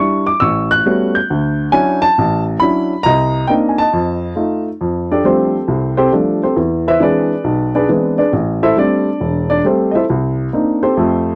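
Playful and warm, this short cut from a longer solo jazz piece swings at 136 BPM in 4/4 on a woody, up-front upright piano, which moves through rich harmonies such as A13, Dmaj9 and Cm9 before settling into F major at 4.8 s over F69, E7b13 and Am7, heard in a dry, close 1970s-style studio sound with light reverb.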